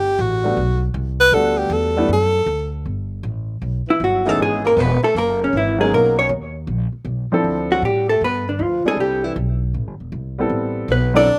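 Small-group swing and bop jazz at 157 BPM in G major, swinging and warm, cut from a longer piece. A breathy, close-miked tenor saxophone with light vibrato and scooped notes takes a solo for the first 2.9 seconds over a woody, thumpy pizzicato upright bass on gut strings and a natural-sounding baby grand piano, then moves to a second line when a dark, clean, compressed hollow-body electric guitar enters with the melody at 3.9 seconds. Saxophone, piano and guitar carry a slapback echo in a dry, close sound, while the chords pass through extended colours such as Gmaj9, C#m9 and C69.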